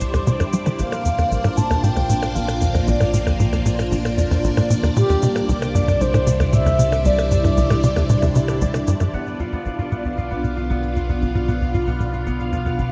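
This mysterious, cosmic stretch of sequencer-driven space music, cut from a longer piece, opens with a lush, vintage string machine holding soft sustained chords through phaser and ensemble chorus, above a tight, punchy sequencer bass riff with nasal sawtooth bite, 12-bit sampler grit and tape echo. Electronic cabasa and percussion blips tick alongside, while an evolving, detuned analog drone settles low with tube saturation, and a filter sweep moves through the analog bass. At 0.8 seconds a mellow, horn-like synth lead enters with a round tone, vibrato and tape echo, carrying the melody as the harmony moves from Cadd9 to Bbadd9 and back. At 9.1 seconds the lead has dropped away, the chords turn to Bdim, the drums fade in, and a bright, ringing concert harp takes up fingerpicked arpeggios. A huge ambient reverb surrounds the whole mix, giving it a vast, drifting sense of space.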